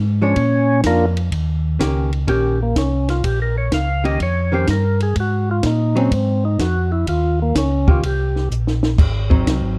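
The percussive tonewheel organ takes the lead with key click and a full, clean voice through a slow rotary speaker, carrying a swinging, soulful melody over a mellow, round organ bass line, hollow-body archtop guitar comping and a dry cocktail drum kit with dark cymbals and a punchy kick, all in a dark soul jazz organ trio groove at 125 BPM in Eb mixolydian, cut from a longer piece, with a drum fill at 8.5 seconds.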